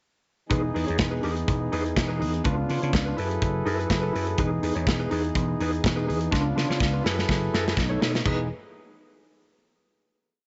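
At 0.5 s the whole band starts together in a joyful, glamorous disco piece in E major at 124 BPM: a polished, up-front, airy acoustic drum kit in a small room plays a four-on-the-floor beat with open hi-hats on the off-beats, a punchy kick and a medium-tuned snare. A growly, amped vintage slap bass plays octave disco lines with slides. Above it, a dark, clean electric guitar plays choppy sixteenth-note figures with tremolo. A pipe organ on its principal stop holds smooth, romantic chord voicings as a sustained pad. The harmony moves through Emaj7, C#7b9 and F#m11, and a drum fill from 6.3 s leads through a B9 into a final Emaj7 chord at 8.3 s. Light studio reverb surrounds the mix, and the top end stops at 7.8 kHz, giving the mix a soft, rounded sheen.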